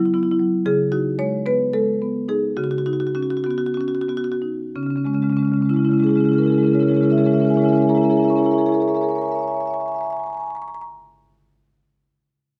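A solo marimba opens the recording, its rosewood bars sounding woody and up front under medium mallets, spanning C#3 to C#6. This short portion of a contemporary classical piece sits in C# minor and 7/8, with a rubato feel and a tempo that moves between 176 and 233 BPM counted in eighths, giving it a flowing, reflective mood. Over the first 4.8 seconds the playing slows down while the harmony drifts from Esus2 over C# to C#sus2 and then Badd9 over C#. At 4.8 seconds a new section begins on a C#m6 chord, and the marimba continues until 10.9 seconds. Close, detailed microphones and light reverb keep the instrument's grain clear, with a faint mains hum beneath it.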